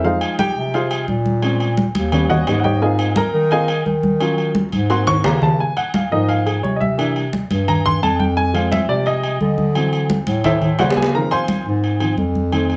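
A straight 4/4 groove at 173 BPM drives this lively, danceable Afro-Cuban jazz excerpt, cut from a longer piece. Bright, thin-skinned congas played with soft hands sound in a live room, and from 0.2 s ringing agogo bells and metal-shelled timbales sound from a distance in a large space. A worn baby grand piano takes the solo up front, intimate and natural, with short sustain and audible action noise. Also up front, a mellow bass clarinet carries the bass line in a jazz style, using vibrato, subtone and scooped notes. The harmony moves through chords such as Fm7, Eb7alt and Ab6 in Ab major, then shifts to Db major at 5.6 s, where it passes through C7, D9 and Dbmaj7, with a drum fill marking the turn just before. Light reverb and close, detailed miking give the recording a clear, present sound.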